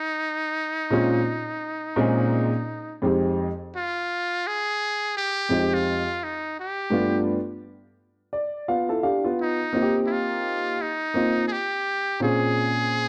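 A trumpet in a metal mute carries the melody from the start, buzzy and breathy with light vibrato and scooped notes, playing up front in a jazz-style solo over this nocturnal, smoky hip hop cut from a longer piece with a swung sixteenth-note feel. A dark baby grand piano enters at 0.9 seconds with mellow, boxy accompaniment through chords such as Bbm9, Fm9, G7 and Cm7, its action noise audible and a fill arriving at 8.0 seconds. The whole sits in an echo-chamber reverb with small room ambience and a worn cassette-tape warble that lends the pitch a warbly drift.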